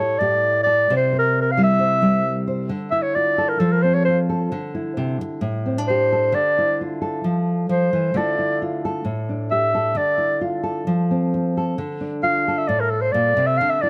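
A straight 4/4 highlife pulse at 132 BPM in D minor carries this bittersweet fragment, where a full-bodied, thumb-plucked nylon-string guitar with fresh strings and audible finger squeak sits up front beneath a mellow, jazz-style clarinet whose subtone, light vibrato and scooped notes take a solo from 2.7 s over chords moving among Dmadd9, F and A7sus4, set in light reverb.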